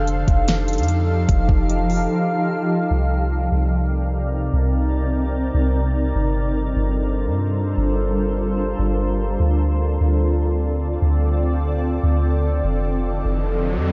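A shimmering, detuned pad with octave-up shimmer and sidechain pumping drifts through this melancholic, hazy cloud-rap excerpt at 148 BPM in half-time, carried by a round, deep 808-style bass from the start, with a smooth R&B drum kit of soft kick and fat snare playing only until 2.0 seconds, a silent gap, then chords moving from Cm9 through Gm11 and Dm7 before a brief electronic riser at 13.2 seconds, all in a dreamy, reverb-soaked mix.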